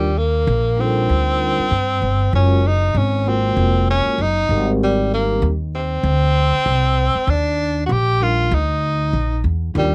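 A breathy tenor saxophone carries the jazz-style solo melody up front, its clear subtone tinged with vibrato and scooped notes, in a smooth, relaxed hip hop cut from a longer piece with a lazy swing on the sixteenths. Beneath it, a vibraphone played with soft mallets rings mellow and metallic with a slow motor vibrato, while a woody pizzicato upright bass sits prominently in the mix. Light reverb surrounds the home cassette recording, with the saxophone and vibraphone carrying a tape coloring as the chords drift from Ebmaj9 through Gbmaj9 and Abmaj9.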